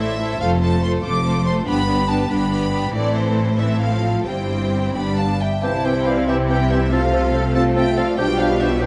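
A lush, vibrato-laden violin section carries the melody over a focused second violin line, smooth violas, clear cellos and distant double basses in this dramatic, restless fragment of a quick classical-period orchestral movement in a rubato 6/8, with an airy flute ensemble entering at 4.9 seconds and a present oboe, warm background clarinet, mellow bassoon and tight French horn chords joining at 5.6 seconds, the whole orchestra set in a moderate scoring-stage reverb.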